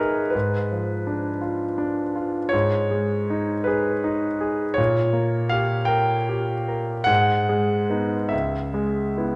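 Melancholic and wistful, this fragment of a romantic nocturne for solo piano unfolds in G# minor at a slow 44-56 BPM, counted in dotted quarters across a 12/8 metre with a rubato feel. A clear concert grand piano carries the whole 9.4 seconds alone, ranging from C#2 up to G5, its deep bass and long sustain giving each chord room to ring. The harmony drifts from a G#dim7 at the opening through G#m, a Gdim/Bb, and back to G#m before settling on C#m7 near 8.3 seconds. The instrument sits up front and intimate, with a polished, present tone and audible action noise that brings the listener close to the keys. A wet recital hall reverb with a 1.5-second decay surrounds the piano, and the passage is cut from a longer piece.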